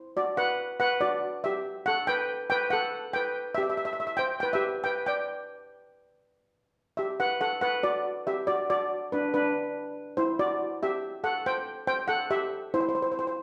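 This calypso fragment, cut from a longer piece, has a sunny, bouncy mood at 141 BPM in a straight 4/4, set in G major. A lone steel pan, a double seconds played with soft rubber sticks, carries everything from 0.2 s to 13.3 s, moving between D4 and G5. Its tone is metallic and shimmering yet mellow, sitting up front in a recital hall with generous reverb. The harmony moves from Gmaj7 to C5 and briefly drops out before the opening phrase returns at 6.8 s over a rootless Gmaj7, then settles on C. The result is a short, breezy statement of a tune heard twice, glowing in the room's long tail.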